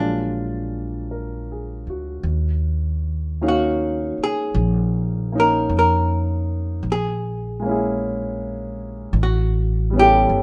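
Wistful and smoky, this slow jazz ballad in Eb minor drifts along at 52 BPM with a lazy swing, set in a light reverb and cut from a longer piece. A dark, clean, picked archtop guitar carries the melody up front, then takes a solo from 2.2 seconds as the harmony moves from Bb7b13 through Ebm9 and Bbm7b5 to A9. Beneath it, a concert grand piano supplies open chords with deep bass, and an upright bass adds woody, growly pizzicato lines.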